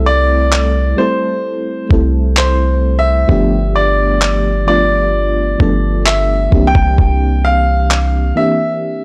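A clear, intimate baby grand piano carries the melody from the start, its natural tone touched with audible action noise and an analog delay, over a dark, full-bodied FM electric piano with tremolo and a deep, sine-like 808-style bass that sits up front with long, decaying notes. At 0.5 s a compressed, dusty soul sampler-style kit joins with a thumpy kick and handclaps, gritty and tape-warm. This smooth, dreamy contemporary R&B cut moves at 65 BPM in C major through C6, G9 and C9 chords, captured as a dry, gritty hardware recording with digital ambience.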